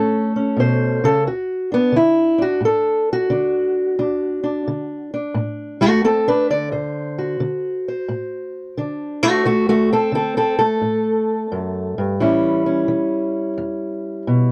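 Swaggering and soulful, this short cut from a longer acoustic country blues piece moves at 88 BPM in 4/4 with swung eighth notes, set in D mixolydian. A lone fingerpicked steel-string parlour guitar, dark and boxy and sitting up front, ranges from D2 to D5, opening on an A chord before settling into a solo over D7 from 1.3 seconds and turning to A7 at 12.2 seconds. The close, dry sound carries little reverb, in the manner of a 1970s studio.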